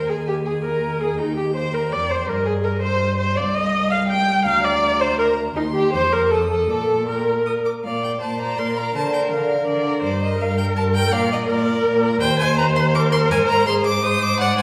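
An expressive viola, warm and up front with vibrato and portamento, carries the accompaniment in this lively, graceful excerpt from a quick classical-period movement for string quartet, moving at 164 BPM in 3/4 with a rubato feel. Two rich, smoothly bowed violins play the melody up close and a second line from further back, while a dark, woody cello anchors the bass. The music starts in Eb major and moves to Bb major at 3.4 s, with a new section beginning at 7.8 s, all set in the lingering reverb of a recital hall.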